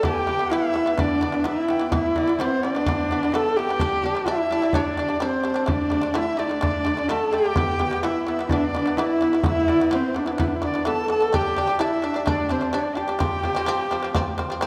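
Set in a lush recital-hall reverb, this proud, vast Mongolian folk excerpt at 128 BPM in 4/4 features a husky, up-front horsehead fiddle carrying the expressive melody with vibrato and portamento, a pure, crisp bamboo dizi adding a bright second line with tape echo, a buzzing, plectrum-plucked shamisen playing arpeggios with tape echo, and a close, dry frame drum providing percussion, over chords moving through E5, G5, D5 and F5.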